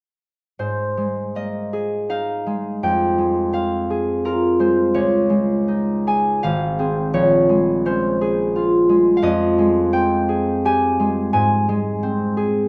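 A concert harp enters at 0.6 seconds and plays alone throughout this short classical passage, cut from a longer piece. The mood is graceful and dreamy, moving in a three-beat metre with a free, rubato feel. The fingerpicked strings sound ringing and close, sitting up front in a light reverb, and the part spans a broad register from Ab1 to Ab5. The harmony drifts through rich, colored chords such as Abadd9, Fmadd9 and Bbm9, coming to rest on Abmaj7 near the end. The harp plays on until 12.7 seconds, giving the fragment a graceful, suspended quality.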